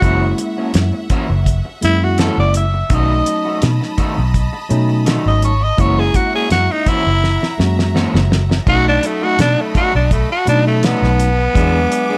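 This laid-back, rollicking soul blues excerpt opens with the full band together: a cloth-damped, thuddy drum kit with a fat snare, tight kick and dark cymbals sits up front beside a round, punchy, foam-muted electric bass. A growling tenor saxophone carries the melody with a raspy, gritty jazz edge, placed forward in the mix and given a plate reverb. Beneath it, a bright tine electric piano plays clean, direct accompaniment, and an electric guitar at the edge of break-up adds dark, fingered stabs bathed in spring reverb. A lush bowed string section holds sustained chords high above, smooth and even with vibrato, and sits quietly in the blend. A drum fill arrives at 7.2 seconds, leading into a new section at 8.7 seconds where the saxophone takes a solo over the groove until the clip is cut off.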